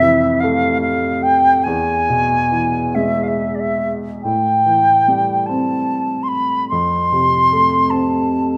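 A moderate recital-hall reverb surrounds this short fragment of a haunting, longing Celtic slow air in A minor, moving in a rubato 6/8 at roughly 45-51 BPM by the dotted quarter. A bright wooden flute carries the melody up front with an airy, tongued tone and expressive vibrato. Beneath it, a woody upright piano with long sustain supplies the accompaniment through Fmaj7, E, Am7 and F, both parts playing together for the full 8.6 seconds.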